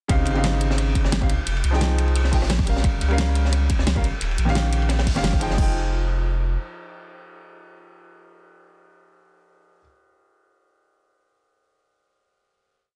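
A melancholic, rolling liquid drum and bass piece in F minor at 175 BPM opens straight into a drop, with a grand piano's syncopated chord stabs, coloured by vintage 12-bit sampler grit and delay, moving through Dbmaj9#11, Fm9, Gm7b5 and Eb9 over a deep, round sine sub bass dub-style line, a punchy layered electronic two-step kick, a pop kit's fat snare, rim clicks, closed hats and crash, and a dark, saturated looped breakbeat with a high-tuned snare and rolled-off cymbals, until the drums drop away at 5.7 seconds, the bass stops at 6.6 seconds, and the piano carries on alone on a final Fm9 until 9.8 seconds, all within a small room and a dense, heavily limited master.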